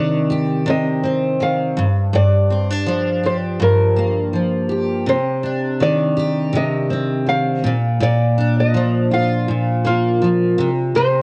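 An up-front, double-tracked steel-string acoustic guitar carries the accompaniment in this short, wistful acoustic pop excerpt in C minor at 82 BPM, its picked notes warm and auditorium-sized, with audible finger squeak and a light sixteenth-note swing. Above it, a dark, small-sounding fingerpicked nylon-string guitar plays the melody, lifted by plate reverb. Both guitars carry a cassette-tape grain in a snug booth ambience, moving reflectively through Cmadd9, Gm7 and Bb before settling on Csus2 at 10.6 seconds.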